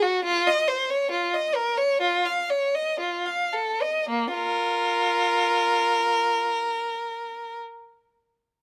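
In a free, rubato 4/4 that slows through its first 4.1 seconds, this solemn, introspective fragment of a baroque-style suite movement features a lone bowed violin, up front and rich, with a focused tone and vibrato. Its harmony moves from a minor chord toward a dominant seventh before settling as the second phrase begins, and the violin falls silent at 7.6 seconds. Close, detailed miking and a light reverb keep the instrument intimate and clear.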